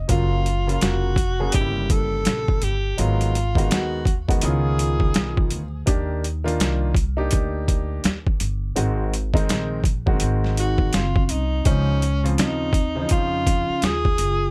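A woody upright piano with audible action noise and a steel-strung pizzicato upright bass open this cool, nocturnal jazz-hop excerpt at 83 BPM with a swung 16th feel, joined at once by a gritty, pitched-down boom bap sampler-style kit with a thumpy kick and overdrive sitting up front, and a clear, subtoned alto saxophone with vibrato, scooped notes and digital delay carrying the melody over chords from Gbmaj7 to Dbmaj9, while a mellow soft-mallet vibraphone in the background enters at 4.4 seconds, it and the saxophone pause at 5.5 seconds, and both return together at 10.6 seconds in a dry mix.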